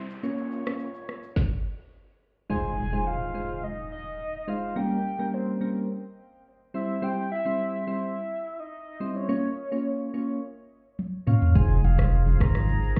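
This sultry, hypnotic afrobeats excerpt in F minor at 106 BPM opens with an electronic noise sweep, soft, round electric-piano-like synth keys with chorus and tremolo, and a brief held chord from a woodwind section in a tight, classical style. An electronic afro-pop drum kit with a deep kick and a woody snare flickers in for a moment. At 2.5 s an impact lands and a full, octave-layered synth lead takes the melody, its sub-octave, wave-folded tone colored by vibrato, chorus and delay. Beneath it, the mellow keys stay up front as the chords move through Fm7, Gdim, C and Bbm. After a drum fill at 11.0 s, the kit returns with kick, snare, rim click, shaker and toms. At 11.6 s a deep sine sub bass, the woodwinds and low-tuned, thick-skinned congas in the background join. Throughout, the whole mix sounds muffled, as if heard through a wall, with a touch of club reverb.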